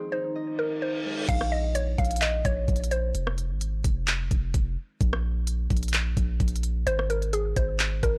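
Hip hop trap in Bb minor at 129 BPM with a half-time feel, menacing and melancholic, cut from a longer piece. A woody, warbling FM synth pluck carries the melody with a touch of chorus over ringing, fingerpicked concert harp, and a reverse cymbal leads into 1.3 seconds, where a knocking trap kit with crisp hats, handclaps, rim clicks and crash arrives alongside a deep, sine-toned 808 bass. The mix is dry and gritty with a cassette-tape character, and the drums, bass and pluck sit up front.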